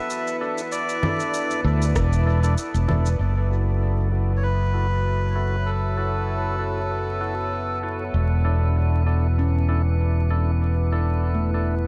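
A reedy, breathy melodica with dub echo opens this meditative ambient dub fragment in F# minor at 97 BPM over a dark, detuned sawtooth pad and a drifting glassy sine texture, while percussive, lightly overdriven tonewheel organ stabs with 12-bit grit and dub echo join an overdriven electronic shaker, conga and rim-click pattern that plays only until 3.2 seconds, where the harmony moves from E7sus4 to F#m7 and a filter sweep begins on the organ; a warm, up-front fingered electric bass enters at 1.6 seconds, followed at 2.0 seconds by a brief analog kick in the background, mellow ringing handpan arpeggios with dub echo arrive at 9.4 seconds, and vinyl crackle with light reverb runs throughout.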